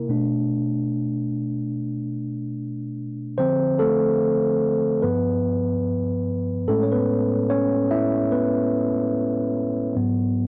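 A mellow tine electric piano carries this short hip hop fragment on its own, sitting up front with a clean, warm tone heard through built-in speakers and softened by cassette tape. The mood is reflective and nostalgic, moving at 73 BPM in 4/4 with a lazy swing on the sixteenth notes. The piano spans from G2 to E5, drifting through Bm7, Dm7, G7 and Amaj9 before touching G#m7 near 10.0 seconds. A moderate small-room reverb gives the recording a close, intimate space, while the dry hardware capture adds grit and transformer saturation. Lifted from a longer piece, the passage runs just 10.5 seconds as a single solo stretch.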